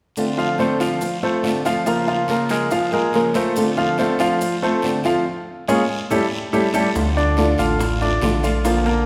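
A dark, fingerpicked flamenco guitar opens this danceable, nostalgic Cuban son and guajira excerpt at 141 BPM in D minor, together with a raspy, dry guiro and mellow maracas in the background, soon joined by a bright, polished baby grand piano playing arpeggios up front over Dm7 and C#6 chords, with a band accent leading to 7.0 seconds, where a deep, detuned analog bass and soft, low-tuned bongos enter, the ensemble ringing in the lush reverb of a recital hall.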